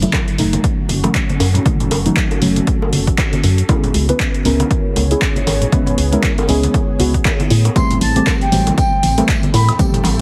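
Hypnotic and late-night, this deep house excerpt moves at 118 BPM in 4/4 with a swung sixteenth-note feel, cut from a longer piece and moving through F#m7, C#m7 and Am7. A punchy, overdriven electronic kick and an overdriven analog drum machine with handclaps, hi-hat and woodblock drive the groove, while bright, saturated congas and bongos played with soft hands sit in the background. A hollow, organ-like FM bass with a fast, decaying attack pumps against the kick, and deep, soft, detuned chord stabs, thickened with chorus and delay, pump in the same way above it. From 0.8 seconds an ethereal pad with slow attack, ensemble chorus and its own reverb breathes quietly behind the mix. Near the end, at 7.8 seconds, a distant, straight-toned concert flute floats in with dub echo, joined by a faint, cloth-damped acoustic kit with a fat snare, hi-hat and tambourine. The whole track is heavily compressed like a radio broadcast, set in a small room with light reverb and a layer of vinyl crackle.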